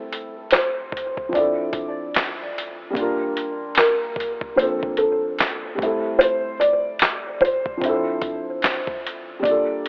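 A cassette-tape haze and a narrow, telephone-like tone sit over light reverb and small-room ambience in this reflective, nostalgic lo-fi hip hop fragment, cut from a longer piece with a swung sixteenth-note feel. Up front, a soft, boxy felt-muted upright piano carries the melody through a tape echo, while a woody, vintage upright piano with short sustain and audible action noise plays the accompaniment over chords moving from Am7 through Dm9, Gm7 and Bbmaj9. A gritty, compressed sampler-style drum kit enters at 0.1 seconds with a thumpy kick, fat snare, hi-hat and handclaps.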